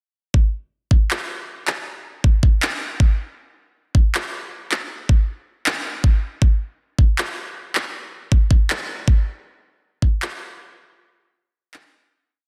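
R&B drum piece at 79 BPM in a straight 4/4, moody and longing, built on a smooth electronic kit whose knocking kick and handclaps sit up front in a slow beat with skipping kicks under light reverb and a dense, heavily limited modern master, playing from 0.3 seconds until a fade-out from 9.5 seconds and a break at 11.0 seconds.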